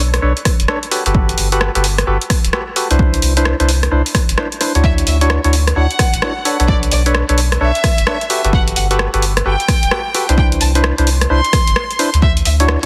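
A swung two-step garage groove, sunny and soulful, rides on a punchy analog drum machine with hi-hat, rim click and a softly clipped snare, while a separate electronic kick drum briefly drops out from 4.4 to 4.8 seconds and a round, mellow dub sub bass pumps underneath. Up front, a hollow, percussive organ stab plays jazzy ninth chords through chorus and tape echo. At 4.8 seconds a rich chamber violin section enters with a vibrato-laden bowed melody, also treated with tape echo. The dense, heavily limited mix carries light digital reverb and a layer of vinyl crackle.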